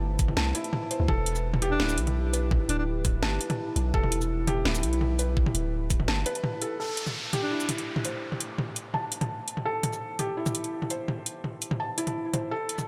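A dark analog pad holds sustained chords under felt-muted upright piano arpeggios that carry gritty 12-bit sampler texture and dub echo, while a long, deep 808-style bass sits up front in this tense, dark half-time drum and bass fragment at 168 BPM in A minor. From 0.2 s a layered kit with a cracking snare, metallic hats, shaker and toms drives alongside a knocking electronic kick until 6.0 s, and a breathy, whispered alto saxophone adds brief phrases treated with tape echo. After a short break, a downlifter arrives at 6.8 s and a filter sweep works across the piano as the pumping, phased pad and the drums carry on to the end.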